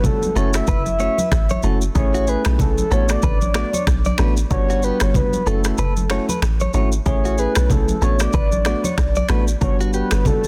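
A woody, punchy log drum bass sits up front in this sunny, romantic afrobeats excerpt at 94 BPM, its fast, decaying attacks carrying a noise layer beneath a produced electronic kit of deep kick, finger snaps, rim click, shaker and a softly clipped snare, with bright, hard-handed congas in the background and the kick dropping out from 5.8 to 7.1 seconds. Over this, a round, detuned synth lead with a sub octave, vibrato, chorus and digital delay carries the melody, while a bell-like tine electric piano plays clean accompaniment. A bright, picked electric guitar, recorded direct and compressed with its own delay, adds a riff from 0.4 seconds through chords moving from F#m7 to Amaj7, D6/A and Gmaj7, all in a dry, dense, heavily limited modern mix with a swung sixteenth-note feel.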